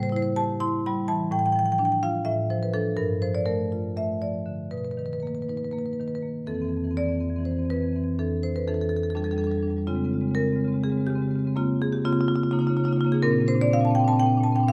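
A solo marimba with medium hard mallets sits up front with a warm tone, ranging from F2 to C6 in this flowing contemporary classical passage in 7/8, cut from a longer piece; its harmony moves from Am7 through Gm9 and Bmaj7, shifts at 6.5 s to Fmaj7, then passes through Dbmaj7 to Bbadd9, all heard in a wet recital hall reverb.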